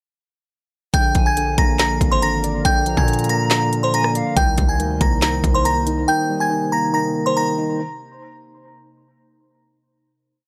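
A half-time trap beat at 140 BPM, with a knocking kick, woody snare layered with clap, crisp hats and fast hi-hat rolls, drives this melancholic, brooding hip hop piece in C minor, where a distorted, aggressive 808-style bass holds long sub-bass notes with pitch slides that follow the kick, a delicate, tinkling synth tine bell loops a melody doubled in octaves through chorus, phaser and analog delay, a clean tine electric piano repeats an eighth-note pedal-note arpeggio, a glassy, ethereal FM pad sustains chords in the background from 1.6 seconds, and a hollow concert flute adds a sparse, airy counter-melody with vibrato, in a dry, gritty recording where the drums stop at 6.0 seconds and the bass at 6.1 seconds.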